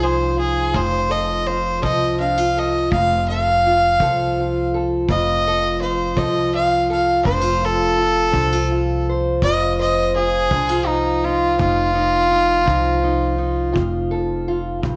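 A biting, nasal fiddle carries the melody up front with a slapback echo, over a boxy, fingerpicked parlour steel-string guitar and a pizzicato upright bass with a dark, woody tone, in a rollicking, gritty acoustic country blues at 55 BPM in 12/8, set in F mixolydian over an F7 chord. A punchy, brushed kick drum with a rolled-off top joins from 0.7 seconds and sits in the background. The fiddle drops out at 13.7 seconds, leaving the guitar, bass and kick to finish this cut from a longer piece, all heard in a small room with moderate plate reverb.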